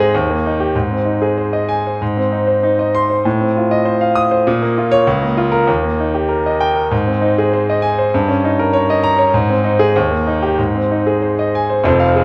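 A clear, natural grand piano sits up front in a moderate stage reverb, playing alone throughout this 12.2-second cut from a longer classical virtuoso study in 2/4. The mood is heroic and brilliant, with a free, rubato feel and a span that reaches from F1 up to Eb6. The harmony circles firmly around its home chord, passing through F7/A, Bbm and Eb7/G before settling back.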